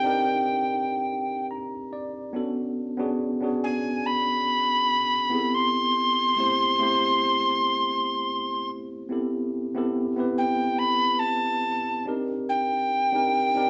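An airy wooden alto recorder with vibrato and a crisp, chiffy attack carries a sultry, late-night R&B melody over a worn, slightly out-of-tune tine electric piano that is lightly overdriven through built-in speakers and adds a brief fill at 1.1 seconds, the two playing live together in a large studio room as the harmony slides from Cm9 through Bm9 to Am9 before returning to Cm9 in this short swung cut from a longer piece.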